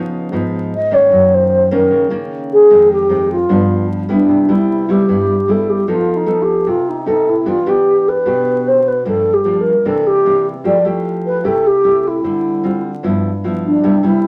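Bossa nova at 151 BPM in a straight 4/4, cut from a longer piece, with a romantic, relaxed mood and tuning set to A4 = 443 Hz, settling into C major from 4.3 seconds over chords like Cmaj7, F7#11 and Fmaj9. A dark, fingerpicked nylon-string guitar, classical in tone with audible finger squeak, carries the accompaniment up front from the start, while an airy, hollow alto flute with vibrato, a crisp attack and rolled-off highs sings the melody from 0.8 seconds, taking a solo through the opening 4.3 seconds. A wet studio reverb and a layer of vinyl crackle give the sound a warm patina.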